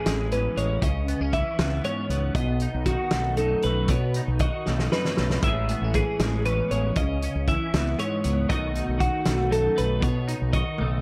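Two bright, twangy twelve-string electric guitars open this wistful, intricate math rock and midwest emo excerpt in a straight 6/8, one picking a chorus-thickened accompaniment while the other picks arpeggios over Amaj7, C#m7 and B7. A growling, overdriven fingered bass sits up front, and a gritty, loose indie drum kit with a fat snare and punchy kick joins them. Its fill from 4.7 to 5.4 s marks the turn back through the chords, all in a studio reverb.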